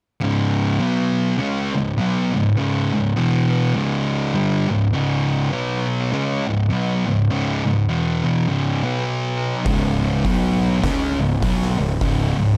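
Two thick fuzz guitars, one dark and one warm, sit up front from the start, grinding out a swung, distorted riff that circles through C#5, B5, E5 and C#m in this hypnotic, ominous stoner and doom metal cut. At 9.7 seconds an overdriven fingered bass joins along with an oversized, low-tuned kit whose boomy kick, fat snare and hi-hat sound saturated and gritty in a bright, pumping stone room. Light reverb and dark production give the passage its heavy weight before it ends at 12.6 seconds.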